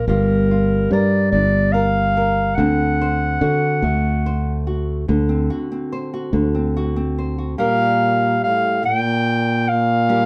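A mellow, classical-style clarinet carries the melody up front in this reflective, melancholic acoustic folk piece for a small band, cut from a longer performance. It moves at 48 BPM in a straight 6/8 in G minor, over a harmony that shifts from Gm7 to D7 and back to Gm7. A warm, fingerpicked nylon-string guitar sits small in the mix as accompaniment throughout, while a dark, round fingered electric bass anchors the low end in a direct, forward way until 7.5 seconds. At 7.6 seconds a French horn enters in a classical style, adding an up-front second line low in its range. The band plays live together in one small room, and a wet reverb gives the sound an intimate, close ambience.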